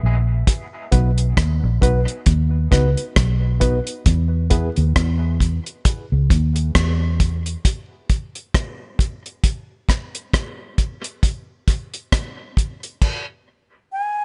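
Hazy and laid-back, this dub reggae excerpt in B major rolls along at 67 BPM with a swung sixteenth feel, led by a dark, round, foam-muted electric bass up front until 7.5 seconds and a dry, deep reggae drum kit with a tight kick, dark cymbals, hi-hat and rim clicks that carries on to 13.3 seconds. A barky, lightly overdriven reed electric piano adds brief stabs with fast tremolo and dub echo until 4.7 seconds, after which the harmony drops away into a break carried by the bass and drums. At 13.9 seconds a close-miked, airy silver flute with vibrato and a crisp attack sounds a single echoing note in a dry, dark mix.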